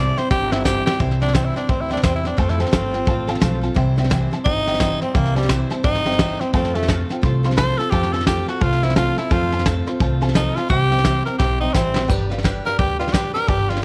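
A swung 173 BPM feel in 4/4 drives this rollicking, upbeat rockabilly cut in C major, where a raspy, gritty tenor saxophone with vibrato and slapback echo carries the melody up front over thumpy gut-string upright bass, full-bodied picked dreadnought acoustic guitar and a detuned, jangly honky-tonk upright piano in the background, while a soft brush drum kit with a fat snare enters at 0.2 seconds and adds fills, all in a dry studio room.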